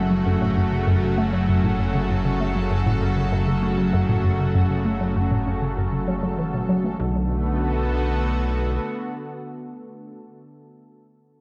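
Steeped in a dark hall reverb, this hypnotic, expansive ambient fragment sets a lush, detuned unison pad of slow-blooming sustained chords up front over a fat, saturated analog bass, while a hollow, nasal square-wave pluck with chorus and delay plays a bouncy riff until 7.3 seconds and a very quiet, resonant stepped-filter texture bubbles high above until 7.0 seconds, when the harmony shifts to a Bm7.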